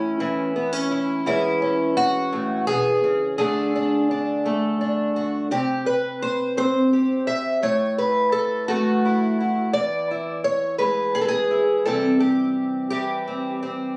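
A fingerpicked twelve-string acoustic guitar opens this short fragment on its own, its octave-doubled strings giving off a shimmering, woody tone dulled by old strings. It is a solo folk piece in 6/8 with a straight feel, and the mood is nostalgic and peaceful. The guitar sits up front and spans from its low E2 up to E5, moving through A, E6, D, C5, A5, E and C chords. After a brief opening gesture, the main passage settles in at 1.3 s and carries through to the cut at 14.0 s. The sound comes from a phone in the room, dressed with a light touch of reverb that lends the dark instrument an intimate, homespun air.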